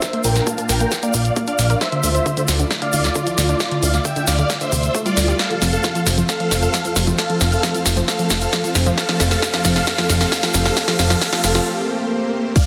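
This uplifting trance build-up opens at once on a huge, euphoric supersaw lead carrying the melody up front, set over a lush supersaw pad with a touch of 12-bit sampler grit, a punchy electronic kick tucked in the background, a house kit of snare, hi-hats, toms and crash, and a grainy, close egg shaker. At 134 BPM in a straight 4/4 and in F major, the passage builds through a drum fill while filter sweeps move across both the lead and the arpeggios, and the harmony passes from Bb to Dmadd9 and settles on F at 5.4 seconds. A round analog pluck spins arpeggios treated with chorus and tape echo, while a fat, nasal sawtooth bass anchors the low end, and the lead, pad, pluck and bass all breathe with sidechain pumping. A very quiet riser, swell and downlifter creep in from 8.2 seconds, and at 11.7 seconds the drum fill gives way to a short break carried by a swell. The sound is soaring and polished, set in a moderate stage reverb with a dense, heavily limited modern master, and this cut is taken from a longer piece.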